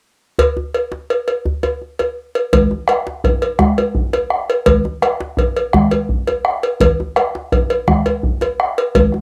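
A homespun cassette recording with light reverb gives this short cut from a longer West African traditional drum ensemble piece an earthy, festive character. It moves in a straight 12/8 at 112 beats per minute, counted in dotted quarters. From 0.4 seconds a metallic cowbell, compressed and saturated, sits up front beside a tight, cracking djembe played close with soft hands. At 2.5 seconds the ensemble fills out as a deep, dark bombo arrives up front with the ambience of a live room, joined by high-tuned congas whose bright, thin skins are struck hard and heard close. The contrast between the clanging bell, the dry snap of the djembe and the booming low drum gives the brief passage its lively, grounded energy.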